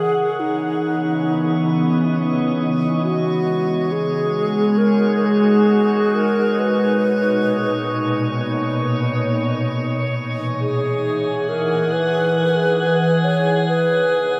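Heard from within a longer piece, a glassy FM pad sits up front with slow-blooming, chorused chords, while a sine-toned glass-harmonics texture fades in beneath it with drifting overtones, and a hollow alto flute sings a pure, vibrato-tinged melody through diffuse delay, floating in free time in E lydian (tuned to A4 = 441 Hz) inside a huge, wet reverb as the peaceful, weightless harmony moves from C#m9 through G#m7 and Bmaj9 to Emaj9, touching a third-less C#7 at the close of its 14.4 seconds.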